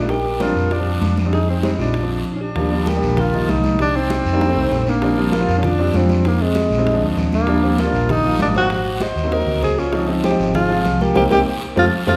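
Afro-Cuban jazz at a brisk 195 BPM in 4/4 with a straight feel, this sunny, sophisticated passage in Bb major is cut from a longer piece. A breathy tenor saxophone carries the melody up front in a mellow jazz style, with vibrato and scooped notes, while a bell-like tine electric piano adds a bright, clean second line. A clear upright piano with a woody, vintage tone and long sustain supplies the accompaniment, and a round, punchy hollow-body electric bass sits dark and amped near the front. Congas with a thick, damped skin sit in the background, joined by very quiet, tight bongos and a raspy guiro, all entering at 0.1 seconds. The harmony moves through chords such as Fm7, Bb7, Ebmaj7 and Dbmaj7, with a brief stop at 2.3 seconds and a band accent at 11.2 seconds topped by a drum fill, all bathed in the reverb of a recital hall.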